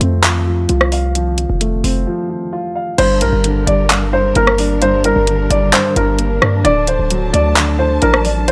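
Brooding and eerie, this half-time trap excerpt in G minor at 131 BPM opens on a dark, boxy baby grand piano filtered to a muffled hush, a punchy, heavy 808-style bass with a fast attack, and an overdriven garage drum kit of crash, handclaps, hi-hat and rim click sitting up front, with a break at 2.1 seconds. At 3.0 seconds a soft, felt-muted upright piano carries an intimate melody through low-pass filtering and digital delay, while a lush bowed string section adds vibrato-rich sustained chords in the background as the harmony moves from F to G minor and then to D at 6.6 seconds. A light reverb wraps the mix.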